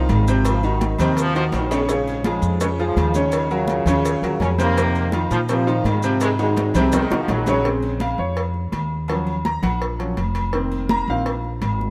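Passionate and fiery, this salsa excerpt opens with a punchy, bright trombone section carrying the melody over a present, up-front concert grand piano and a woody, growly upright bass, while congas, cowbell and bongos, ringing timbales and agogo bells, and grainy maracas drive the percussion, a vintage-toned second trombone line interjects in the background, drum fills land near 1.4 and 6.2 seconds, and the piano takes a solo from 7.7 seconds in light reverb.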